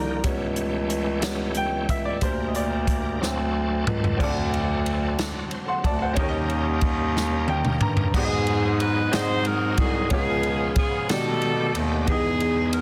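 Densely limited and modern, this short cut from a slow gospel piece sits in a small room with light reverb, giving it a solemn, fervent air in a straight 6/8. A brilliant baby grand piano leads with a solo passage over the opening 4.2 seconds. Beneath it, a full, shouting tonewheel organ holds sustained chords in the background, colored by key click, chorus vibrato and a slow rotary speaker, while a roomy bass clarinet in classical style carries the low line up front. A polished, airy big-band drum kit with a punchy kick and medium-tuned snare enters at 0.2 seconds, dropping in fills at 3.2 and 7.2 seconds, the second alongside a piano fill before the final section. At 8.2 seconds a jazz-style saxophone section takes the melody with vibrato, moving through rich changes from G#m7 and C#7 to B7alt before settling on Emaj7.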